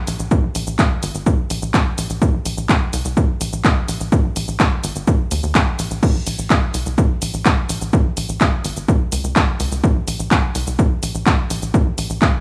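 The tight, nasal sequencer bass opens together with a punchy analog drum machine of crash cymbal, handclaps, hi-hat and shaker, and an up-front electronic kick joins at 0.3 seconds. This dramatic, melancholic melodic techno fragment runs at 126 BPM in 4/4 in Bb minor, tuned to A4 = 435 Hz. The driving sawtooth-and-square bass has a filter pluck with a fast attack that decays, shaped by sidechain pumping, all set in a dry, gritty hardware sound with studio reverb.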